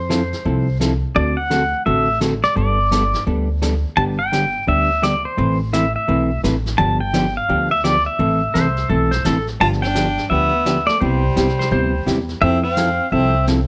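Western swing country with a cheerful, playful bounce at 170 BPM, where an up-front, compressed pedal steel guitar sings the melody with slides and volume swells over woody, thumpy pizzicato upright bass, dark hollow-body jazz guitar accompaniment and a vintage brush drum kit with a rolled-off top, while a bright, twangy lap steel guitar slips in briefly from 8.5 seconds and a smooth, clear fiddle adds a second line from 9.6 seconds, all in light reverb, in this excerpt cut from a longer piece.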